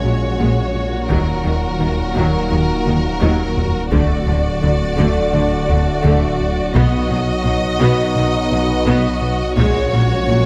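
This tense, vast excerpt of hybrid orchestral and electronic film score opens at 85 BPM with lush, vibrato-rich violins carrying a smooth melody over a softer second violin line, focused violas in the background, and close, expressive cellos and woody double basses sitting very quietly beneath. Dark, distant French horns and bright, tight trombones hold sustained chords in the background. A round, deep analog bass riff and a menacing detuned saw bass with an evolving filter swell anchor the low end through a D#m, D and B progression. A very quiet taiko ensemble struck with heavy sticks enters at 1.1 s, with a drum fill at 2.9 s, and moderate recital hall reverb gives the strings and brass a spacious sense of depth.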